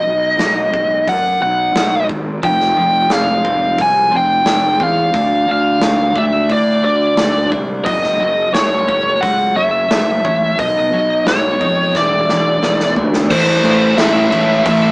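A biting, overdriven lead guitar carries the melody over a growly fuzz bass from the start of this brooding, angsty quiet-loud alternative rock piece, with a big acoustic drum kit of bright cymbals, a medium-tuned snare and a punchy kick joining almost at once, a clean, compressed twelve-string electric guitar picking arpeggios with tremolo and slapback echo in the background from 2.4 seconds, a drum fill leading into a thick, double-tracked fuzz guitar riff that arrives up front at 13.3 seconds, all captured as a rough rehearsal-room recording with light reverb and a small-speaker sound.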